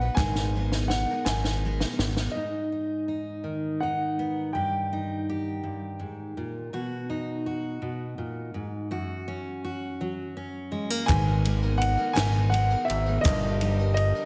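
A dark, woody upright piano with audible action noise, slapback echo and tape echo carries the melody of this bittersweet, stirring indie folk excerpt in 6/8, joined by a shimmering, octave-doubled twelve-string guitar, a slightly detuned vintage upright piano in the background, a thick sawtooth analog bass with a filter sweep, a dry cocktail drum kit with a high-tuned snare and tight kick that opens with a fill at 0.2 s, and a very quiet egg shaker and group handclap, before a full-bodied fingerpicked jumbo steel-string guitar takes over the accompaniment from 2.4 to 11.1 s and the fuller arrangement returns, all set in a big arena-scale reverb.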